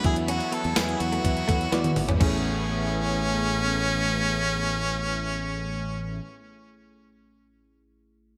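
A straight 4/4 groove from a clean 12-bit drum machine, thumpy and up front with gated reverb, drives this glossy, nostalgic 1980s-style pop fragment alongside a punchy fingered bass and a compressed, direct-recorded guitar riff, until a drum fill brings the beat and riff to a stop at 2.3 s as the harmony moves from Esus2 to Amaj7. Out front, a clear harmonica plays a jazz-tinged solo line with scooped notes, light vibrato and delay, over a brassy, detuned sawtooth pad with chorus and a filter swell. Beneath them sit a very quiet crunchy overdriven guitar and a dark FM electric piano, the piano lingering alone until 8.4 s, all set in a moderate plate reverb within a bright digital production.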